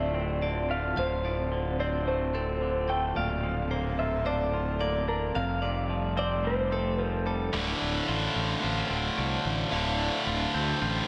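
A dark, slightly broken-up guitar through a small old amp carries the melody over an airy, breathy pad, a twangy clean guitar arpeggio, a scooped lower arpeggio guitar with slapback echo, and a growly fuzz bass, setting a cinematic, melancholic rock mood in a lush hall reverb with a big arena sound. The chords move from Dm7 through Bbmaj7/D to Fadd9 before returning to Dm7. At 7.5 seconds the lead melody has stopped, and a tight, up-front distorted guitar riff enters in the low register, giving this fragment of a longer piece a heavier edge.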